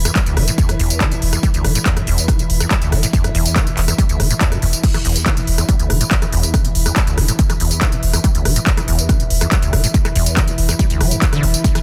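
Driving peak-time techno in E minor at 141 BPM, this hypnotic, industrial excerpt runs about 11.8 seconds, with the tuning set to A4 = 436 Hz. An overdriven, heavy electronic kick anchors the groove alongside an up-front, layered drum kit of crash, handclaps, smooth hi-hats, rim click and tambourine, while a deep, thick saturated sub bass holds E1 under a squelchy, resonant sawtooth acid riff with delay and ensemble chorus. An eerie, metallic FM drone with a slow attack and long release hangs between E3 and E4, and sidechain pumping breathes through the bass, riff, drone and drum kit in a dense, heavily limited mix with light digital reverb.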